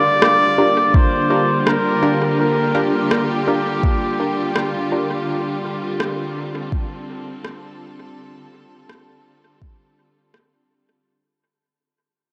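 A veiled, cup-muted trumpet plays a soft, classical-style solo melody up front with dub echo until 5.3 seconds, over a rich, smooth bowed string section holding a Gm7 chord, while a soft overdriven electronic kick, an overdriven rim click with dub echo in the background, and detuned sawtooth dub chord stabs with chorus, filter sweep and echo drift through this hazy, deep ambient dub fragment in G minor at 83 BPM, steeped in huge ambient reverb as it fades out across its 11.1 seconds.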